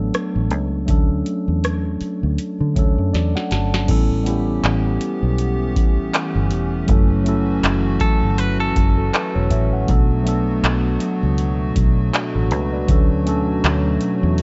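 A worn, warbling cassette-tape sound with light reverb and a dulled top end frames this moody, longing contemporary R&B passage, cut from a longer piece, at 80 BPM in 4/4 with a swung sixteenth-note feel in B minor. Up front, a mellow tine electric piano heard through its built-in speakers carries the accompaniment over a dark, round, foam-muted fingered bass and a booming analog drum machine with a deep kick, crisp snare, handclaps, metallic hats, rim clicks and a crash cymbal. The chords move from Bm7 and Dmaj7 through A9 and F#m7 before returning, and the electric piano and drums both play fills just before the second section begins at 3.9 seconds. A hollow, flute-like soft pad with a slow attack, chorus and sidechain pumping enters at 4.2 seconds, sitting low behind the other parts. At 8.0 seconds a bright, twangy, direct-recorded clean electric guitar adds a short run of picked arpeggios through a digital delay.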